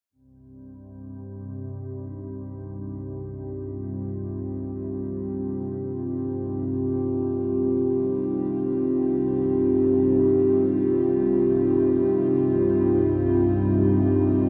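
In free time, this desolate, unsettling fragment of dark ambient drone sets a moody, detuned analog pad up front, with its chorus, moving notch and shimmer reverb on sustained chords, over a quieter, sine-like organ drone thickened by ensemble chorus that fades in slowly, all within a huge, wet reverb lasting 7.4 seconds.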